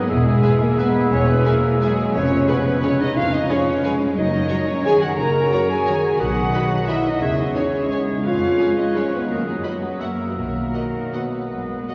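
A sweeping, festive classical orchestral passage in B major, cut from a longer piece, opens with most of the ensemble sounding at once in a lilting 3/4 at 150-194 BPM, its rubato pulse giving it a waltz-like freedom. A rich, lush violin section carries the melody from a distance with smooth vibrato. The double bass section enters a moment later, at 0.1 seconds, and a quieter, focused second violin line and a very quiet viola section filling in the accompaniment join at 0.4 seconds. A close cello section and the up-front double bass section anchor the bass. Over this, a pure metal concert flute, a bright vintage-toned clarinet and a smooth oboe weave second lines, while a mellow, roomy bassoon adds soft accompaniment. The French horn section sits prominently on sustained chords, lending a golden fullness as the harmony moves from E through C#7/E# and F# before settling on B and closing with an F#7 to B cadence at 10.4 seconds. 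The whole orchestra floats in a cavernous cathedral reverb, and a worn, warbling cassette-tape quality with drifting pitch lends the recording a nostalgic, faded character.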